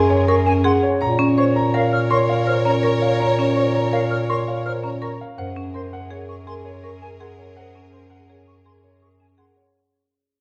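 Meditative and hypnotic, this minimalist classical pattern piece in 6/4 at 165 BPM sets a warm concert grand piano melody over hard-mallet marimba arpeggios with a woody, bright bite, a mellow bass clarinet bass line, a lush bowed violin section holding sustained chords, a dark, very quiet French horn second line, and silver flute arpeggios, pure with vibrato, entering at 0.3 s, all moving between Gbadd9 and Bbm chords in a moderate scoring-stage reverb as the cut from a longer work fades out.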